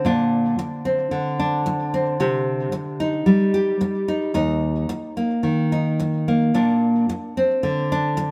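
Folk fingerstyle in a haunting, melancholic mood, this 8.3-second fragment of a longer piece features a rubato nylon-string guitar at 110 BPM in 4/4, tuned to A4 = 441 Hz: full-bodied, deep and classical in tone, fingerpicked up front with audible finger squeak and tape echo, moving through Bbadd9, Cmadd9 and Eb5 before returning to Bbadd9, all recorded live in one room with light reverb.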